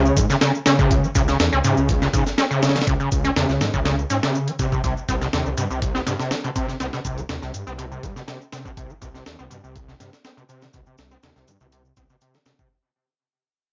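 A dry, gritty hardware sound with a muted top end and moderate studio reverb frames this raw, funky breakbeat excerpt at 122 BPM, fading out across its full 12.7 seconds. An aggressive, squelchy acid line, distorted and resonant with a filter sweep, subtle chorus and analog delay, screams up front over a thick, menacing detuned saw bass with tube saturation. A compressed sampler-style kit with a thumpy kick and high-tuned snare sits forward, a tape-warm electronic shaker stays in the background, and the harmony shifts from C#5 to C5 at 4.6 seconds.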